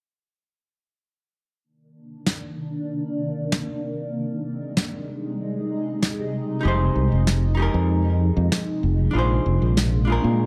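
Relaxed sunset chillout in a straight four, with a shimmering, ethereal pad sustaining Cm9, Abmaj7, Fm7 and Bb9 chords through chorus and phaser above a brushed snare up front, before a dark, hollow-body jazz guitar and a growly, tube-saturated fingered bass enter together at 6.6 seconds in this short cut from a longer piece.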